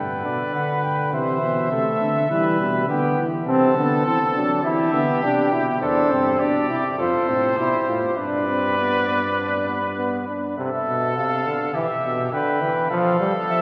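Classical imitative canzona for brass ensemble at 102 BPM in 4/4, driving and solemn, shifting from A minor to C major at 5.8 s, with a mellow cornet singing the melody with light vibrato, a clear, roomy trumpet weaving the second line, a warm, smooth-topped trombone supplying accompaniment, and a dark, distant bass trombone holding the bass until 10.2 s, the whole ensemble heard in the long, wet cathedral reverb of a church or concert hall.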